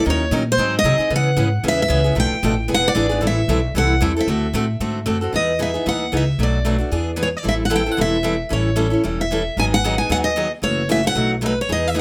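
A bright, up-front steel-string guitar leads this short cut from a longer piece of swinging, playful acoustic string jazz in the manouche style, carrying the melody with fresh-sounding strings and an audible finger squeak. Beside it, a second picked steel-string guitar plays the accompaniment with a boxy, parlour-like tone from older strings, also placed close in the mix. Underneath, a pizzicato upright bass on gut strings gives a woody, thumpy low end at a slightly lower level. The harmony moves through a busy run of seventh chords, shifting at 5.3 seconds from the opening section into a second one that settles first on a major seventh chord before heading through minor sevenths toward a dominant close. A moderate studio reverb adds some room, though the balance has the rough, informal feel of a home demo.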